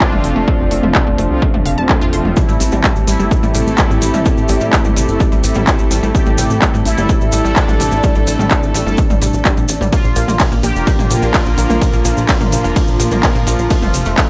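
A punchy, up-front electronic kick drives this melancholic, cinematic melodic techno excerpt, joined by a tape-warmed drum kit of handclaps, smooth hi-hats, ride cymbal and toms, a funky plucky analog bass, and grainy maracas that enter at 2.4 s just after a very quiet electronic swell. Above them, a juicy, resonant sweep polysynth carries the melody with chorus and tape echo, while a bright, detuned unison pluck spins arpeggios with 12-bit sampler grit, a bold brassy pad plays stabs until 13.7 s, and distant, reedy chamber strings hold gut-string chords over an F, Am7, Bb progression. A dark, warbling, lo-fi tape-like pad murmurs softly in the background. The lead synth, pluck, brassy pad, strings, bass and kit pieces pump against the kick, and the mix is dry and gritty with a cassette-tape character.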